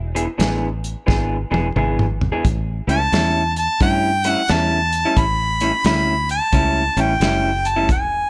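Electric blues shuffle with a laid-back, soulful swing, cut from a longer piece. A fingered electric bass, punchy and foam-muted, sits up front beside a dark, slightly broken-up guitar riff through a small old amp with spring reverb, while a soul drum kit with a fat snare and rolled-off top plays a fill from 1.1 to 2.4 seconds as the chords move from E7 to A7. At 2.9 seconds a clear, close-miked harmonica with overdrive, vibrato and scooped notes takes a jazz-style solo over the top, all in a light reverb with a faint mains hum.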